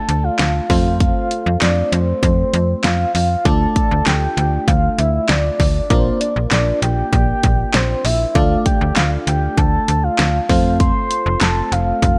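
Bright 1980s-style digital production with light reverb frames this nocturnal, melancholic synth-pop excerpt, where a soft, round octave-layered synth lead carries the melody with chorus, tremolo, vibrato and delay over glassy, bell-like FM electric piano accompaniment, a snappy, metallic slap-like FM bass and an up-front pop drum kit of punchy kick, fat snare, hi-hat and handclaps.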